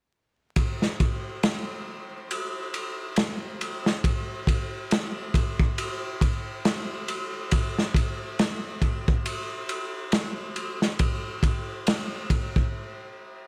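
A crunchy, gritty breakbeat kit sits up front, its punchy kick, medium-tuned snare and dark ride cymbal shaped by saturation and a rolled-off top in a small room. This is a cinematic, hypnotic trip hop groove at 69 BPM in 4/4 with a 59% 16th-note swing, cut from a longer piece and coloured by light reverb and vinyl crackle. The drums enter at 0.6 seconds and stop at 12.7 seconds, leaving a brief gap before the end.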